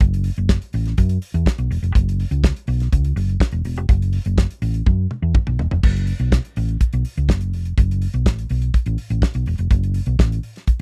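A straight 4/4 disco groove at 124 BPM drives this glamorous passage from a longer piece, with a damped 1970s-style acoustic drum kit up front: fat snare, tight kick, hi-hat, toms and crash cymbal. A dark, round hollow-body electric bass, fingered and amped, sits equally close in the mix, ranging between E1 and F#2 until it drops out at 10.4 s, leaving the drums briefly alone. A drum fill from 4.9 to 5.8 s carries the music into its second section, and the whole has a dry, close, vintage studio sound.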